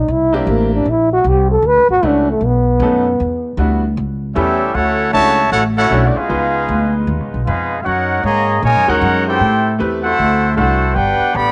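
A breathy, whispered solo trombone opens this joyful big band swing excerpt at 154 BPM, its dark, scooped phrases with vibrato sitting up front over a woody pizzicato upright bass and a brilliant upright piano with long sustain. At 4.3 seconds a distant, roomy trombone section enters with a tight second line, and a moment later, at 4.4 seconds, a clear trumpet section takes over the melody above it with light vibrato. Chords such as Dmaj9, C#9 and F#69 move under the swinging eighths, all set in a small room with light reverb.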